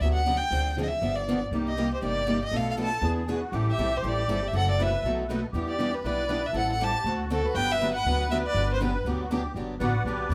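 An up-front bowed violin sings the melody with vibrato and portamento over two picked steel-string acoustic guitars, one bright and boxy and the other warm, and a woody, thumpy pizzicato upright bass in this charming, swinging gypsy jazz excerpt at 239 BPM in G major, with a reedy, shimmering musette accordion joining on a second line at 1.5 seconds, all played live together in a large studio room with moderate reverb.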